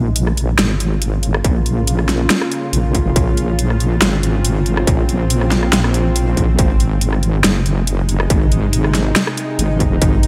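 Meditative and brooding, this half-time deep dubstep fragment sets a tense, string-like drone with slow attack, vibrato and its own reverb over a heavy, detuned wobble bass thickened with chorus and saturation, while an up-front, tape-warm electronic drum kit of bright hi-hats, rim clicks and a huge snare is joined at 1.4 s by a distorted, layered kick as the harmony moves from Bbm to Ab at 6.6 s in a lightly reverberant space.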